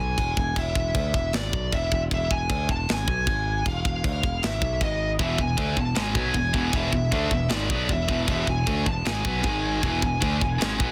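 A dark, high-gain lead guitar with digital delay carries the melody up front over a bright, growly picked bass and a tight acoustic drum kit with china cymbal and a softly clipped kick in this epic, heavy metal excerpt at 155 BPM, with a sludgy overdriven guitar and a tight distorted guitar joining on the riff at 5.2 s, all in a dense, heavily limited modern mix with light reverb.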